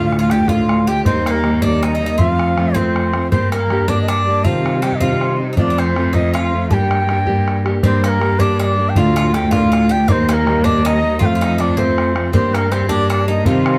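A spirited, driving Celtic jig in 6/8 at 106 BPM in G minor, with a tight, damped bodhran pulsing under a reedy, airy bansuri that carries the tongued melody from a slightly distant place. A metallic, double-strung Irish bouzouki plays a picked second line while a boxy, fingerpicked archtop guitar supplies the accompaniment, and a smooth bowed cello with vibrato anchors the bass. The same section plays twice over changes moving through Dm, Eb, F, Gm and Cm, and light reverb is applied to the mix in this short excerpt cut from a longer piece.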